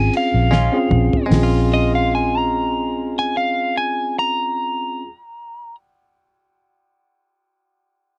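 Soul blues in Bb minor at 74 BPM, soulful and mournful, this fragment of a longer piece opens on a Bbm7 with a slowing lead guitar solo, its dark, slightly broken-up tone sitting up front over a clean tine electric piano heard through its built-in speakers and a round, foam-muted fingered bass holding Bb1. A muffled, cloth-damped drum kit with a fat snare and dark, rolled-off cymbals enters at 0.1 s, plays a fill from 0.5 s and stops at 1.5 s, while a bright, twangy clean guitar recorded direct adds stabs lower in the mix. The sound is dry and close, like a 1970s studio session, with a straight-eighth feel carrying a light sixteenth-note swing.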